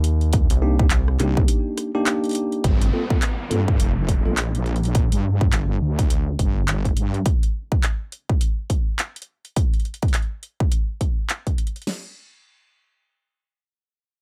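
A heavy, saturated wobble bass features in this gritty, swaggering glitch hop excerpt, entering at 1.2 seconds with chorus and overdrive on its detuned, resonant tone and playing until 7.2 seconds. Before it, a rubbery, hollow square bass opens the track with a bouncy filter pluck. The piece is in G minor at 104 BPM in 4/4, with a 60% swing on the sixteenths, and moves from Cm7 to Gm7 before the harmony drops out at 7.3 seconds. A layered, tape-toned electronic drum kit carries the groove throughout. Its punchy kick and huge snare sit up front, and metallic hi-hats, handclaps and rim clicks fill the upper layer. Bell-like, bright electric piano stabs ring out early with sidechain pumping and dub echo, while a downlifter effect sweeps in the background. The mix is dry, with little reverb.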